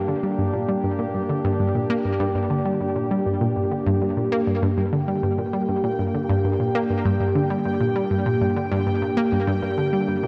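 Mysterious and hypnotic, this cut from a longer piece of ambient, sequencer-driven space music moves at 99 BPM in a straight 4/4, resting on a single G minor chord and tuned slightly low to A4 = 438 Hz. An analog pluck carries the riff from 0.1 seconds, its round, detuned sawtooth tone with fast attack and short decay sitting up front, thickened by chorus and trailed by tape echo. Above it, sounding from the very start, a sweeping resonant pad holds sustained chords between Bb3 and G4, its evolving sawtooth sound opening with a filter swell and soft attack before a long release, also chorused and bright. At 4.6 seconds a bubbling stepped-filter texture enters high on G5, quieter than the other parts, its resonant tone shifting through random filter steps and washed in its own built-in reverb. The whole mix sits in a lush hall reverb with a 2.5-second tail and carries the worn, warbly pitch drift of old cassette tape.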